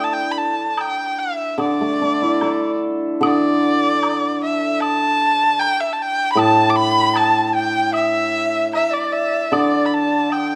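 A rich, biting erhu with light vibrato and portamento sings the high melody up front over a shimmering, ringing hammered dulcimer in this pastoral yet festive, freely rubato excerpt of a Chinese chamber ensemble piece, with a woodblock in the background from 0.8 s and an airy bamboo dizi with a buzzing membrane and crisp attack joining on a second line at 6.3 s, all captured by close, detailed microphones in a moderate recital hall reverb.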